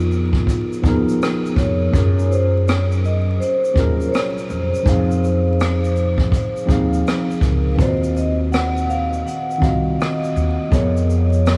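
This nostalgic, melancholic lo-fi hip hop excerpt opens with vinyl crackle and small-room ambience as a worn, slightly out-of-tune tine electric piano, a dark, growly pizzicato upright bass and a soft-mallet vibraphone begin together. A vintage brush kit joins at 0.1 s, up front with a punchy kick, hi-hat, rim clicks and shaker, its top end rolled off, and the groove swings on the sixteenths. The ringing, metallic vibraphone carries the melody with a slow motor vibrato and diffuse ambient delay over a cassette-tinged piano, and the harmony drifts from Db13 through Gbmaj7 and Fm7 to Ebm69.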